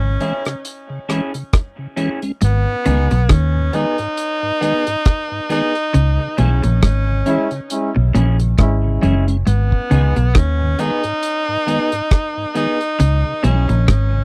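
Laid-back and serious, this roots reggae passage, cut from a longer piece, moves with a swung sixteenth-note feel over a dry, close 1970s-style studio sound. A breathy tenor saxophone carries the melody up front, whispered and intimate with a soft attack, scooped notes and vibrato, its line trailed by tape echo. Beneath it, a tonewheel organ supplies piping, lightly overdriven accompaniment with key click, chorus vibrato and a slow rotary speaker, while a semi-hollow electric guitar sits in the background playing a clean, hollow-bodied riff through tremolo. A second electric guitar, slightly broken-up and lo-fi through a small old amp, adds picked accompaniment coloured by phaser and tape echo. The foundation comes from a dark, round, foam-muted fingered electric bass and a deep reggae drum kit with a tight kick, rim click and hi-hat, both placed up front. A bright, tight trombone section appears briefly from 7.3 to 9.2 seconds as a second line with tape echo, inside a band accent that runs from 5.9 to 9.5 seconds.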